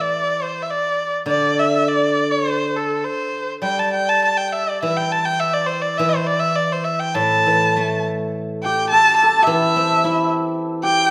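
Chinese traditional chamber music, graceful and wistful, moves in a rubato 2/4 at roughly 98-113 BPM in this short excerpt cut from a longer piece. A single bowed erhu carries the melody up front with a rich, smooth tone, vibrato and portamento, while a fingerpicked steel-string zither accompanies from the start with a silvery, ringing sound. At 8.7 seconds a mellow, shimmering hammered dulcimer adds a second line, all set in a moderate recital-hall reverberation.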